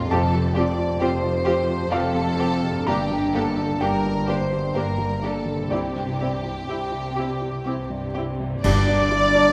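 Rubato, unevenly pulsed 3/4 at 63 BPM carries this bittersweet, sorrowful cinematic film-score excerpt in G dorian, where a violin section with light vibrato sings the melody over a second violin line, an intimate baby grand piano with audible action noise, very quiet ringing fingerpicked harp arpeggios, a lush background viola section, expressive soft-attack cellos and woody double basses in a wet scoring-stage reverb, before bright cymbal swells, clash cymbals and concert bass drum arrive at 5.7 s and an accent at 8.6 s brings a smooth solo clarinet, a dark, tight French horn section and close, dry hard-mallet timpani as the chords move from Fadd9 through Gm and Cadd9 back to Gm.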